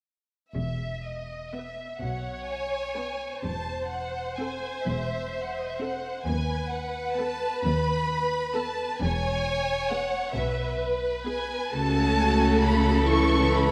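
Bathed in a wet concert-hall reverb, this excerpt from a slow, lyrical romantic movement for string orchestra moves in a serene 6/8 with free, rubato phrasing. Up-front, lush violins carry the expressive, vibrato-laden melody from 0.5 seconds, while cellos and focused double basses bow the bass line beneath. A rich viola section fills in the accompaniment from 1.5 seconds, and a close second violin line adds gliding portamento from 2.0 seconds.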